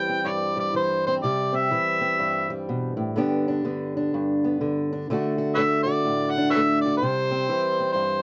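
Acoustic country blues with a rollicking, swaggering swing, cut from a longer piece. An amplified, gritty harmonica carries the melody up front with light vibrato and jazz-style tongue slaps, playing from the start until 2.5 seconds and returning at 5.6 seconds. Throughout, an old ladder-braced acoustic guitar fingerpicks a dark, woody, boxy accompaniment on old strings through C, G and D in a small room with moderate reverb.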